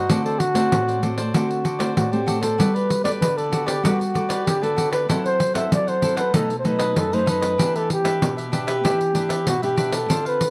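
A breathy, whispered flugelhorn with vibrato and scooped notes carries a yearning, nostalgic melody up front in this short samba and choro excerpt in G major at 96 BPM, over a jingly pandeiro, a crisp picked cavaquinho and a fingerpicked classical nylon-string guitar, as the chords move from D7 into Gmaj9 at 2.6 seconds and on through F#m7b5 and B7 to Em7 in a dry, close 1970s-style studio sound with light reverb.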